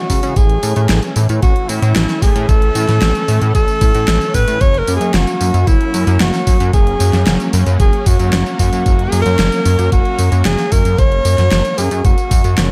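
This nocturnal, cinematic synthwave excerpt at 113 BPM opens with a mellow, close-miked tenor saxophone carrying a jazz-style solo melody with scooped notes, light vibrato and delay, over a silky, nasal analog string pad that sits in the background with ensemble chorus and sidechain pumping. From 0.1 seconds a glossy, up-front chorused synth bass with pulse-width modulation and a filter pluck enters together with a knocking, tape-toned electronic kick and a pop drum kit with a fat snare, bright hats and tambourine in gated reverb. The harmony moves from A to F# at 4.6 seconds, and the overall sound is dry and close.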